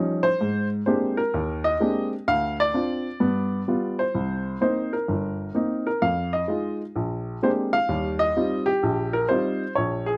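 A warm baby grand piano plays alone and up front for this short, sophisticated and relaxed jazz excerpt in Eb major at 128 BPM with a swung 4/4 feel, its intimate, natural tone carrying audible action noise and short sustain through a dry outdoor sound as the chords move from Abmaj9#11 through Dm7, G7, Cm7, Fm7 and Bb13 to settle on Eb69 over 10.2 seconds.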